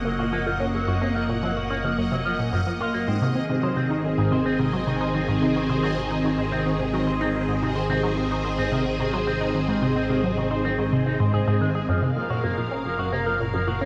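Awash in a huge, wet ambient reverb, this expansive, cosmic excerpt of sequencer-driven space music moves at 109 BPM in a straight 4/4, its harmony shifting from Gbmaj7 to Ab at 3.1 seconds and back to Gbmaj7 at 11.9 seconds. A swirling, vintage string machine with ensemble chorus and phaser holds sustained chords up front, while an evolving, wave-folded analog drone anchors the bass and a bubbling stepped-filter texture with its own reverb drifts in the background. Entering at 0.1 seconds, a juicy, squelchy resonant blip pluck with phaser and delay carries the riff, and a twangy clean electric guitar through an envelope filter and delay adds picked arpeggios.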